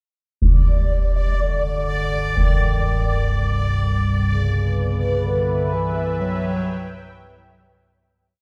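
Ominous and unsettling, this short dark ambient drone piece moves at 62 BPM in a vast, echoing space, opening at 0.4 s with distant, slow concert bass drum hits, a bubbling texture of random filter steps holding a bright high D5, and a mellow, roomy bass clarinet drifting through a free solo melody in diffuse ambient delay. A deep, rumbling, nasal synth drone of detuned triangle and sawtooth enters at 1.8 s, and at 4.3 s an evolving, full-bodied sawtooth-and-sine pad with chorus swells up front as the harmony shifts from Cmadd9 to Emadd9. The drone and bass clarinet fade in while the bubbling texture fades away, and the whole piece fades out toward its close.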